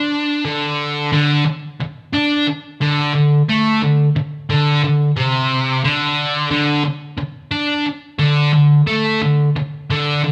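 Rock with a gritty, smoky mood, built on a sludgy, overdriven electric guitar riff, picked and double-tracked up front, ringing through a moderate large-room reverb as if the band were playing live together, in a short cut from a longer piece.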